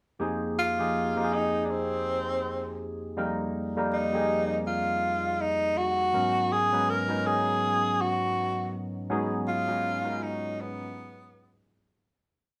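R&B in an introspective, sultry mood, this short piece is a single verse over a swung 4/4 feel. A barky tine electric piano, lightly overdriven through a combo amp and set up front, carries the accompaniment with pushed chord rhythms, rootless voicings and grace notes, colored by lush chorus and plate reverb. From 0.6 seconds a breathy tenor saxophone, close-miked and clear with vibrato, takes the solo in a jazz style, spinning a free melody that never settles on a recurring motif, with slapback echo and plate reverb trailing its lines. The harmony moves from Fm11 to Abm11 at 6.1 seconds. A modest small-room ambience surrounds the pair, and the recording fades out from 9.1 seconds to its close.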